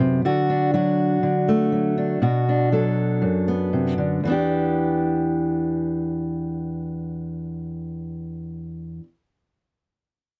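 In a straight, even 4/4, this wistful, yearning folk fragment features a lone fingerpicked steel-string acoustic guitar, dark in tone and placed up front, with finger squeaks audible on the strings. The harmony moves from D to Bm and settles on Em7 at 4.2 seconds, where the piece shifts into a second section. The close, dry 1970s-style studio sound carries a moderate booth ambience.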